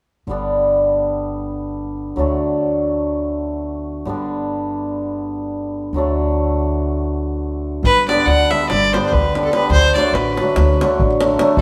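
Bright, shimmering hammered dulcimer and woody, dark pizzicato upright bass open this festive Balkan wedding-band folk piece at 286 BPM in eighths, moving with a straight feel through a 9/8 metre in G major as the chords alternate between G and D. At 7.8 seconds the deep, dry davul joins, and from 7.9 seconds a single bowed fiddle with a rich, nasal, reedy gut-string tone takes the virtuosic melody up front. The band plays live together in a stone room with a wet reverb, and the recording is cut from a longer piece.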